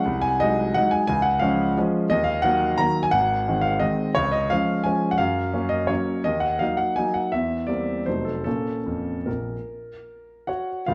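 Set in a moderately reverberant recital hall with a dark, warm production, this brief, nostalgic classical waltz in 3/4 unfolds with rubato on a solo grand piano that sounds clear, intimate and polished, sitting up front with long sustain and audible action noise as it traces a wistful path from Ab7/C through Gbmaj7 and F7b9 to settle on Bbm at 8.5 seconds, cut from a longer piece.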